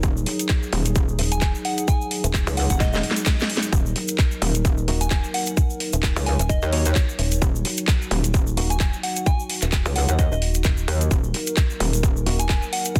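A gritty, aggressive bass house excerpt opens with a metallic, wobbling bass and a tight, up-front electronic kick over a deep, moody analog pad, a garage kit with cracking snare, handclaps and hats, and a grainy egg shaker, joined at 1.2 seconds by a dark FM bass and at 1.3 seconds by a soft, warbling synth bell with tape echo, while a hollow, organ-like stab sits in the background from 4.9 seconds, with the pad, both basses and the stab pumping under a dense, heavily limited master.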